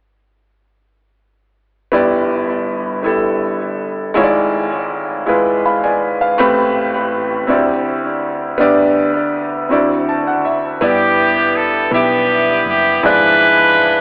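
A tight, vintage horn section carries the melody up front from 10.8 seconds in this soulful, uplifting slow gospel excerpt in 6/8, its lines colored by tape echo. Before that, a clear, worn grand piano plays the accompaniment alone from 1.9 seconds through rich chords like G6, E7b9/G#, Am9 and D9sus4, adding a fill just before the horns arrive. A dark, round hollow-body electric bass joins the horns far back in the mix, all of it bathed in wet spring reverb and an echo-heavy, AM radio sound.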